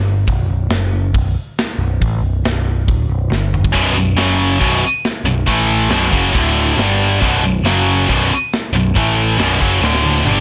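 A straight 4/4 pulse carries this epic, relentless heavy metal passage, cut from a longer piece. An overdriven picked electric bass opens alone, round, punchy and up front in the low register, and a tight metal drum kit joins almost at once with an airy, polished big-room sound, a medium-tuned snare, a softly clipped kick, hi-hat and toms. After a drum fill, two bright, distorted electric guitars enter together at 3.7 seconds, one of them high-gain, both picked and forward in the mix. They play the riff over power chords that keep circling back to B5 between moves to F#5, A5, D5 and G5. A second drum fill arrives at 9.8 seconds, and the recording as a whole is blown-out and pushed into overdrive, with light reverb.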